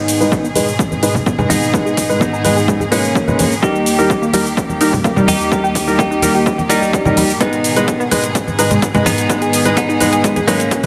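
Progressive house at 127 BPM in G# minor, tuned to A4 = 436 Hz, this emotional, dreamy excerpt is a build-up moving from G#m to D# and back to G#m. A clean, twangy electric guitar, recorded direct and picked, carries the melody through tape echo and a low-pass filter, while a clear studio string section with light vibrato and an earthy, biting bowed tone holds sustained chords beneath it. A brilliant baby grand piano with long sustain plays stabs through digital delay, and a round, nasal analog pluck with a detuned sawtooth character runs arpeggios in the background, colored by chorus and phaser. The guitar, pluck and piano each carry a filter sweep, and sidechain pumping shapes the guitar, strings, piano, pluck, hi-hat, cabasa and congas. A punchy, overdriven electronic kick, re-recorded in a large room, sits alongside metallic, overdriven hi-hat and cabasa and ringing, hard-handed congas from a small room, with a drum fill arriving at 7.4 seconds under light reverb.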